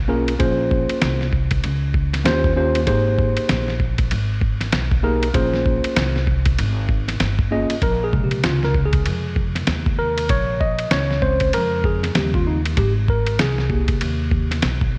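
A woody, dark pizzicato upright bass opens this cool, mellow jazz-hop excerpt at 97 BPM in Bb dorian, joined by a worn, slightly out-of-tune tine electric piano accompanying up front and a muffled, compressed sampler-style drum kit with a thumpy kick, hi-hat, ride and medium-tuned snare, all set in a moderate echo-chamber reverb with a swung 16th-note feel, before the electric piano takes a clean, direct solo from 7.8 seconds over the Bbm7, Eb13 and Abmaj9 changes.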